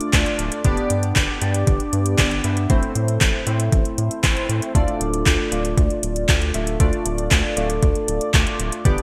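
Glossy, chorused polysynth stabs open this italo disco excerpt at 0.0 seconds, alongside a house drum kit of layered handclaps and metallic hi-hats that sit up front under gated reverb. The synth blends pulse and sawtooth waves with pulse-width modulation and a filter sweep, sounding bright and retro through a delay. Its evolving tone carries a melodramatic, bittersweet progression from Dm to G to Am and back to Dm, in D dorian at 117 BPM in a straight 4/4. At 0.1 seconds a thumpy, overdriven electronic kick arrives, sampler-style and re-recorded in a large room. Entering at the same moment is a round, deep analog bass that mixes square and sine waves with wave-folding and tube saturation for a mellow, sustained low end. The drum kit has a tape-warm sheen, and the mix carries a 1980s-style digital production sound set in a moderate plate reverb.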